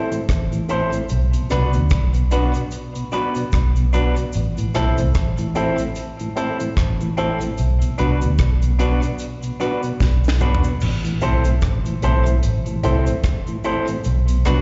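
At 74 BPM in 4/4 with a 16th-note swing, this roots reggae clip settles into a laid-back, serious groove in A dorian, moving between Am and Bm. The deep reggae drum kit sits up front with a tight kick, a high-tuned snare, rim clicks, hi-hat, toms and crash, its dry sound touched by tape echo, and a drum fill at 10.0 seconds leads into a new section at 10.8 seconds. The vintage muted fingered bass is the loudest part, round, punchy and foam-muted, entering at 0.3 seconds in the low register. A clean, hollow-bodied semi-hollow electric guitar plays accompaniment with tape echo, plate reverb and slapback, and a dark baby grand piano adds smooth, long-sustaining stabs with plate reverb and slapback. A mellow tonewheel organ, lightly overdriven with chorus vibrato and a slow rotary speaker, adds further accompaniment, while a cabasa sits faintly in the background. The whole performance comes across as a live gig heard through the venue's PA, with recital-hall reverb and a muffled top end.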